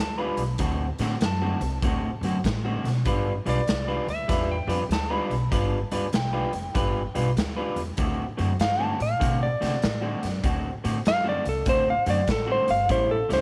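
The recording sits in a small room with light reverb, and the drums carry a bright, pumping stone-room sound that is gritty and saturated. This is a laid-back, swaggering electric blues shuffle at 98 BPM in 4/4, swung on the eighths, in D mixolydian with tuning at A4 = 444 Hz, cut from a longer piece. A clean lap steel guitar carries the melody from the first moment, played with a slide and fingered, with volume swells, while a woody pizzicato upright bass on steel strings holds down the low end. At 0.2 seconds an electric guitar through a small old amp adds an up-front, dark, slightly broken-up picked riff, and at 0.4 seconds the garage kit enters with hi-hat, a medium-tuned snare and a punchy kick. The harmony moves from G7 to D7 and back to G7, then returns to D7 before turning to A7 near the close.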